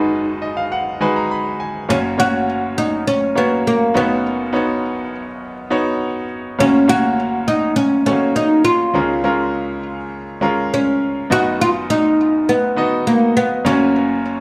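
A bright grand piano opens this romantic, glossy pop excerpt with a fill from 0.1 to 1.9 seconds, while a woody, plectrum-plucked oud carries the melody up front, its double strings touched with plate reverb and delay. The polished piano accompaniment spans from deep bass to high treble with short sustain, moving through chords mostly held over an F# bass before shifting to a new section at 11.3 seconds. A wet studio reverb gives the whole recording a glossy studio sound.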